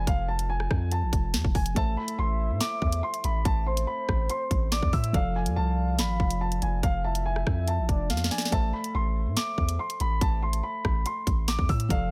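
Hard-clipped kicks, a sharp snare and bright hats from an up-front electronic drill kit drive this dark, ominous half-time hip hop cut at 142 BPM in A harmonic minor, with a deep, sine-toned 808-style bass sustaining long decaying notes underneath and a short drum fill at 8.1 seconds. A mellow, long-sustaining baby grand carries the melody through a digital delay over a felt-muted upright piano whose boxy, intimate accompaniment keeps its action noise audible, while the chords move between F6 and Am. From 2.0 to 8.5 seconds a soft, round synth lead with a detuned sub octave adds a second line, coloured by chorus, phaser, vibrato and delay, all in a digital ambience within this excerpt of a longer piece.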